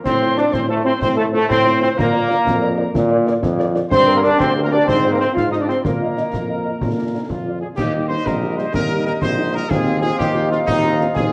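An up-front tuba with light vibrato anchors this rousing, proud military-style march for wind band in a straight 6/8, sharing the foreground with a clear trombone section holding sustained chords. Above them a mellow, close-miked trumpet section carries the melody with a soft attack, while a pure, wooden-toned piccolo adds an expressive, tongued second line with vibrato until it drops out at 7.3 s. A distant, roomy woodwind section and a very quiet, vintage-sounding euphonium weave further lines in the background, and a dark, smooth-topped French horn section supplies tight, barely audible accompaniment. Concert snare drum, clash cymbals and concert bass drum give the march its acoustic drive, the cymbals sounding dark in a small room. A large studio reverb bathes the ensemble, and a worn cassette tape quality brings a warbling pitch drift to this proud fragment cut from a longer piece, which shifts into a new section at 7.8 s.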